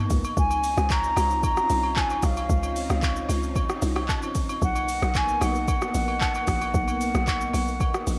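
A home cassette recording with light reverb and digital ambience frames this relaxed amapiano excerpt at 113 BPM in Db major, moving from Dbmaj9 to Cbmaj7. A silky, vintage string machine with ensemble chorus and sidechain pumping holds sustained chords from the start. A hollow, bouncy log drum bass, an up-front electronic R&B kit with soft kick, metallic hats, rim click, handclaps and shaker, and acoustic agogo bells and woodblock carry the groove, while from 0.4 seconds a breathy, distant concert flute with a crisp attack sings the melody high above.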